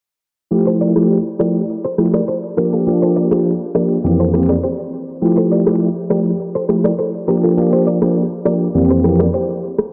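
Soaked in a lush hall reverb and a low-pass filter sweep, this dreamy, breezy afrobeats fragment in F major at 102 BPM sets an up-front, bell-like tine electric piano with ensemble chorus over electronic shaker and rim click, while a twangy, picked clean electric guitar with chorus and analog delay plays a romantic riff from 0.7 seconds across chords moving from Fmaj9 to Bb6/F and closing on Fmaj7sus2.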